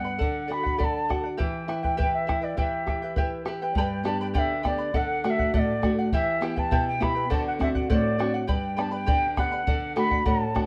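A mellow cane quena carries the melody with an airy, tongued tone and vibrato, sitting distant in the small room. Beneath it, a bright, shimmering charango with doubled strings and a dark, up-front nylon-string guitar, complete with finger squeak, are both fingerpicked, while a round, close bombo joins at 0.2 seconds. This festive yet wistful Andean folk fragment moves at 102 BPM in a straight 2/4 through chords of D, Em, G and D7, and is cut from a longer piece.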